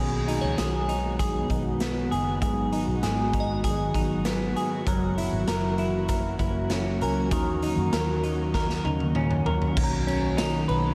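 An up-front semi-hollow electric guitar rings out clean arpeggios with subtle chorus and delay over an airy, detuned pad and a round, foam-muted fingered bass, while a gritty, saturated garage drum kit with a boomy kick pumps in a bright stone room and a crystalline FM bell glints in the background, giving this ethereal, blissful dream pop excerpt in B major at 98 BPM its lush hall glow through the chords B6, G#m7, F#7 and D#m7 before a drum fill from 8.5 s lands on Badd9 at 9.8 s.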